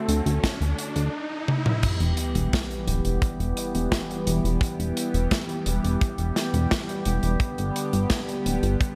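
Bright, 1980s-style digital production with light studio reverb frames this nocturnal, cinematic synthwave excerpt. It opens on a D chord as an electronic riser builds and a drum fill leads into a sub-drop impact at 1.8 s, where the music settles on E minor before moving to G at 7.4 s. A bold, brassy detuned sawtooth pad with chorus, vibrato and a moving notch sustains chords over a glossy, retro pulse-wave synth bass with a plucky filter, both pumping with sidechain, while a tight, up-front kick and a small-room acoustic kit with a medium-tuned snare, hi-hat, toms and crash drive the groove.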